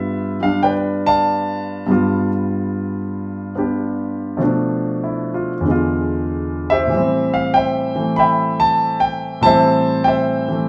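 Relaxed and sophisticated, this short cut from a longer solo jazz piece features a lone grand piano playing with a swung eighth-note feel in 4/4, ranging from E2 to B5. The piano sits up front with an intimate, natural tone, long sustain and audible action noise, framed by a wet studio reverb that suggests a listening spot further back in the room. Across its 10.7 seconds it moves from G7 through Bm7b5 and E7b9 to Am7 at 6.9 seconds.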